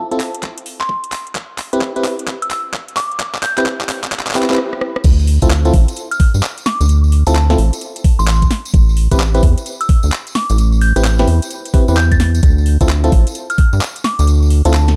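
A dark, lightly reverberant production opens this moody, bouncy cut from a longer UK garage two-step track at 130 BPM in D dorian, where a knocking, up-front electronic kick and a garage kit of cracking snare, metallic hats, handclaps, rim click and crash frame chorused, bell-like FM electric piano stabs and a crystalline synth bell melody under a filter sweep through a build-up over C6 and Cmaj7, before the drop at 5.0 seconds brings in a rubbery, wave-folded square bass with sidechain pumping and a jingly, close tambourine over chords moving from D5 to Am9 and back to D5.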